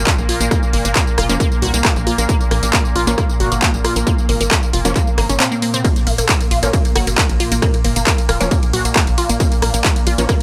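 An overdriven electronic kick drum hits heavy and up front, joined by a layered techno kit of handclaps, hi-hat, ride cymbal, rim click and tambourine, driving this intense peak-time techno excerpt in straight 4/4. Under them a tight, punchy sequencer bass and a swarming, wave-folded drone pump with the sidechain, while a squelchy, resonant blip pluck runs its riff through phaser and tape echo. From 1.3 seconds an aggressive, detuned rave stab with chorus and analog delay sits in the background, all captured in a gritty, dry hardware recording with small room ambience on the drums.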